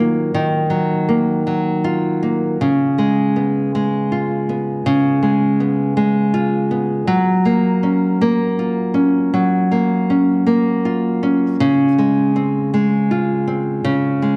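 Pop in 6/8 at 53 BPM in Db major, this romantic, heartfelt fragment of a longer piece features a solo fingerpicked nylon-string guitar, small and up front with an acoustic warmth, moving through Ebmadd9, Db7, Gbmaj7 and Dbmaj7 over 14.4 seconds, bathed in a dark production and the wet reverb of a scoring stage.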